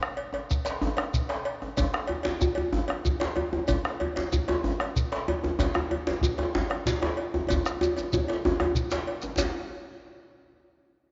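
A festive, earthy West African drum ensemble groove in a straight 12/8 at 126 BPM (dotted quarters), cut from a longer piece. A round bombo opens at 0.0 s, quickly joined by a metallic cowbell, a distant medium-tuned djembe fitted with metal rattles, and a grainy, mellow shekere that sits close and dry. A second, louder djembe enters up front at 2.1 s before a drum fill at 7.5 s leads into a brief new section, the whole mix carrying a moderate plate reverb and a dark, rolled-off top end.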